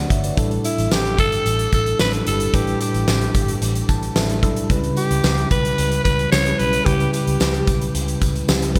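A bright, lush 1980s-style digital production with a moderate hall reverb frames this uplifting, romantic pop snippet at 111 BPM in 4/4. A huge arena drum kit with a fat snare and punchy kick sits up front beside a very quiet, jingly tambourine, while a dark, round, foam-muted electric bass anchors the low end and a mellow tine electric piano, glistening with shimmer reverb, supplies the chords, adding a fill from 3.6 to 4.7 seconds as the harmony moves from A7sus4 to C#m7b5. Entering at 0.6 seconds, a breathy, raspy alto saxophone carries the melody up front with vibrato and a gritty edge, trailed by shimmer reverb and delay.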